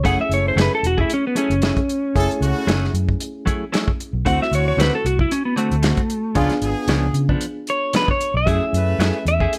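A mournful, straight-eighth soul blues at 114 BPM opens on an F#m9 chord, with a dry, dark drum kit with a tight kick, a round, foam-muted fingered bass punching up front, clean direct-recorded guitar stabs with harmonic tremolo, a bright, barky electric piano with overdrive and fast tremolo, and clear, loosely sustained horn chords with light vibrato. From 0.1 seconds an electric slide guitar, played with fingerpicks and slightly broken-up, takes a soulful solo up front, reaching up to F#5 as the harmony moves through D7 and C#7b9 before returning to F#m9 at 8.5 seconds. Light reverb surrounds this brief section, which is cut from a longer piece.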